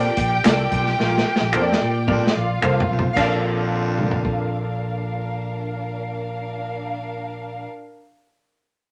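Uptempo 1960s-style soul in Bb major at 110 BPM, this short, uplifting clip from a longer piece opens on a Bbmaj7 chord in a straight 4/4 feel. A lush, bowed studio violin section carries a smooth second line with vibrato, sitting up front alongside a punchy, amped fingered electric bass. A bright, woody upright piano, worn and slightly detuned, fills out the accompaniment, while a breathy, raspy baritone saxophone plays a low, gritty riff in the background until 4.8 seconds. The vintage drum kit, lo-fi and muffled with dark cymbals and a punchy kick, plays from 0.2 to 4.4 seconds and includes a drum fill from 1.0 to 3.2 seconds, with close finger snaps adding percussion up to 3.4 seconds. Tucked in the background, an electric guitar through a small old amp adds dark, slightly broken-up stabs bathed in spring reverb, all set in a moderate studio room.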